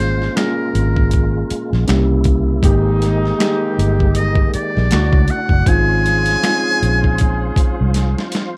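Sensual and relaxed, this short neo-soul and R&B passage moves at 79 BPM in 4/4 with a gently swung sixteenth feel, cut from a longer piece. A trumpet with a metal mute carries the melody, its buzzy, breathy tone whispered and intimate, with vibrato, soft attacks and scooped notes in a jazz style, set in a plate reverb. Beneath it, a gritty, overdriven reed electric piano played through a combo amp provides accompaniment, while a tonewheel organ holds sustained chords in the background with key click, chorus vibrato and a fast rotary speaker. A foam-muted, round vintage electric bass and a compressed, pitched-down boom bap sampler-style kit sit up front, the kit's thumpy kick, medium-tuned snare, hi-hat and finger snaps ending in a fill from 8.0 seconds. A mellow horn section adds stabs with light vibrato from 2.6 seconds, over lush harmony that moves from Bbm9/Ab through C7b9, Abmaj9 and Dmaj7 to Dbmaj7/Ab, all in a dark production with moderate studio reverb.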